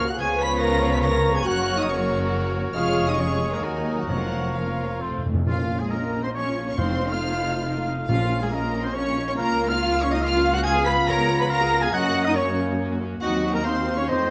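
A rich, vibrato-laden violin section carries the melody high above the orchestra in this urgent, restless classical-period movement in Bb minor, taken quickly at 139 BPM in 3/4 with a rubato feel and cut from a longer piece. A clear clarinet, a very quiet hollow flute, a background oboe with a distant, roomy tone and a focused second violin section weave second lines, while violas and a mellow bassoon accompany until the bassoon drops out at 5.2 seconds. Mellow French horns sustain chords, a dark, soft-edged trumpet section adds faint stabs, expressive cellos with portamento and distant double basses anchor the bass, and timpani played with medium mallets on calf heads enter at 4.1 seconds with a fill at 5.0 seconds, all set in a moderate scoring-stage reverb.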